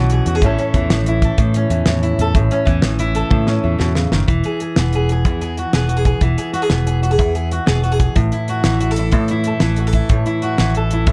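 A picked, full-bodied steel-string acoustic guitar sits up front in this sunny, carefree highlife guitar band excerpt in E major, moving through chords of A, E and A5 at 124 BPM in a straight 12/8, backed by a round, punchy fingered electric bass and a damped, dry 70s drum kit with a fat snare and tight kick that plays a fill from 3.3 to 4.3 seconds before a new section begins, all in light reverb.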